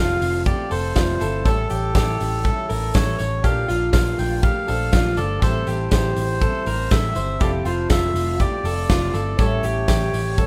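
A straight 4/4 beat at 121 BPM drives this bittersweet, restless stretch of jangly indie pop, cut from a longer piece: a punchy, up-front rock kit in a bright stone room and a close, jingly tambourine both come in at 0.2 s over a dark, foam-muted, round picked bass. A dark, slightly broken-up electric guitar picks arpeggios while a shimmering, octave-doubled twelve-string acoustic and a brilliant, woody, slightly detuned upright piano with long sustain sit in the background, moving through Fmaj7, A7, Bbmaj7 and Am7. On top, a reedy, breathy, nasal melodica carries the melody through plate reverb, all within a rough home demo mix with light reverb.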